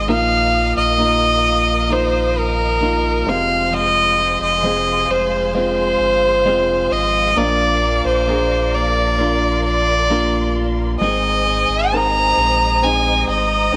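Emotional and hopeful, this slow pop ballad is a short cut from a longer piece, built around a rich, focused solo violin that sings up front with vibrato and a smooth top, touched by a slapback echo. Beneath it, a dark, woody upright piano supplies the accompaniment with a mellow, boxy tone. A lush studio string section holds sustained bowed chords in the background, while a bright, twangy twelve-string electric guitar picks clean, compressed arpeggios further back in the mix. A deep sub bass with an octave adds a full, sustained foundation. Every part plays throughout, the harmony moving from Bbsus4 through Fm and Bb before shifting to Ab at 11.0 seconds as a new section begins, all set in a moderate echo chamber reverb.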